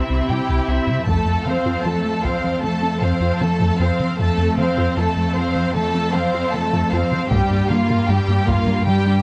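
Heard through close, detailed microphones with light reverb, this tense, relentless cut from a hybrid orchestral and electronic film score moves at 77 BPM in a straight 4/4 over C, F and Gm7 chords. Lush, vibrato-rich violin sections carry a focused, smooth-topped melody above an expressive second line, while a distant viola section accompanies and a cello section holds the bass. A dark, gliding synth bass riff with portamento and a very quiet, round, chorused pluck playing arpeggios sit beneath, and a vintage, band-limited taiko ensemble struck with hard sticks bursts in at 1.1 s and again at 7.3 s.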